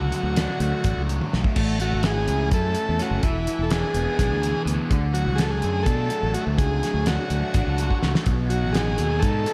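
Hypnotic and hazy, this psychedelic rock passage, cut from a longer piece, moves in an odd 7/8 metre with a straight feel. A vintage combo organ carries the melody up front with a buzzy, lightly vibrato-tinged tone trailed by analog delay, while a double-tracked fuzz guitar plays a bright, compressed riff colored by distortion and a phaser. Beneath them, a round fingered electric bass sits close to the listener. A cloth-damped drum kit with a fat snare, tight kick and rolled-off top gives a thuddy pulse on kick, snare, hi-hat, toms and crash, with fills at 1.2 seconds and 7.9 seconds. The harmony drifts from D to Amaj7 and E7, returns to D, and lands on B7, all bathed in a moderate, lush hall reverb that makes the mix dreamy.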